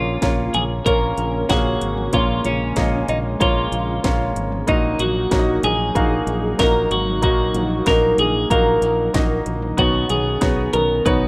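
A twelve-string electric guitar carries the melody from the opening moment of this short piano-driven pop clip, its clean, twangy, compressed tone sitting up front over a clear concert grand piano that supplies accompaniment with deep bass and short sustain. Beneath them, an analog pad holds sustained chords in the background, its detuned sawtooth sound smoothed by chorus and warbling tremolo. A bright, punchy fingered electric bass stays low and direct, while a house drum kit enters at 0.2 seconds with a punchy kick, cracking snare, metallic hats and toms. The tempo is a steady 94 BPM in straight 4/4, moving from A#m to D#m at 4.7 seconds and arriving on Badd9 at 9.8 seconds. The mood is hopeful and warm, and the light reverb and rough home-demo mix give the cut an unpolished character.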